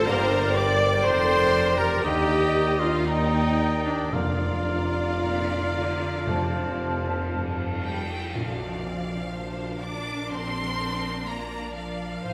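Set in a reverberant concert hall, this serene, lyrical slow romantic orchestral movement unfolds with rubato as lush violins carry an expressive melody with vibrato and portamento over a second violin line, rich violas and cellos, and woody double basses, while dark French horns hold chords, a ringing harp adds very quiet arpeggios, a background trumpet plays stabs until 7.3 s, a mellow tuba doubles the bass, airy flutes, a smooth clarinet and a soft oboe add second lines, a very quiet trombone section sustains chords, and timpani with dark cymbals and tam-tam enter at 4.1 s ahead of a full ensemble accent at 8.4 s.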